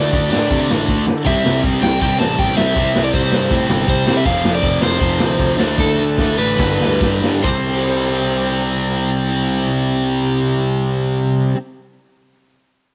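Rowdy and rebellious, this short cut from a longer punk rock piece charges along in straight 4/4 at 135-160 BPM with the rough, saturated feel of a home cassette recording in a small room. Two distorted guitars drive the riff: a tight, bright one sits up front while a sludgy, overdriven one rumbles in the background. Above them, an overdriven semi-hollow guitar carries the melody with a hollow-body tone and a tape-worn edge, and a growly fuzz bass fills the low end. A raw garage drum kit pumps with the room, its punchy kick, medium-tuned snare and crash cymbals sounding gritty and rolled-off at the top. The band slows from 4.3 seconds as the drums break into a fill at 5.8 seconds, passing through chords such as D5, C, F5 and G. The drums drop out at 7.5 seconds, leaving the guitars and bass to push on into a new section.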